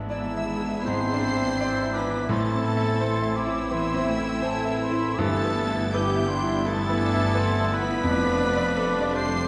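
Classical romantic movement for piano and orchestra, passionate and lush, with a rubato feel and cut from a longer piece that sits back in a wet scoring-stage reverb. A clear, vintage grand piano with short sustain carries the melody, joined high by an expressive violin section, while a second violin section, an airy distant flute, a punchy oboe and a close-miked clarinet weave second lines over viola accompaniment, mellow French horns, bright trombones and dark trumpet stabs. Cellos and double basses anchor the bass, and hard-mallet timpani on calf heads sound briefly from 5.2 to 6.2 seconds, while the harmony moves through E7/G#, Am, Em/G and Dm/F.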